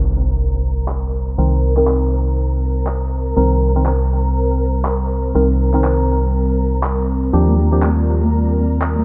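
Heard through light reverb, small-room ambience and a low-pass filter, this hypnotic deep house excerpt opens with a background electronic impact over a soft, flute-like chorused pad, a dark, up-front organ-like FM bass, layered electronic shaker and handclaps, and a lush, woody studio violin section with vibrato. At 1.4 s a mellow, wave-folded percussive organ stab with chorus, phaser and tape echo enters, and filter sweeps run over both the stab and the pad. The harmony shifts from Cm7 to Ebmaj9 at 7.3 s, and bright, high-tuned congas join in the background at 7.5 s.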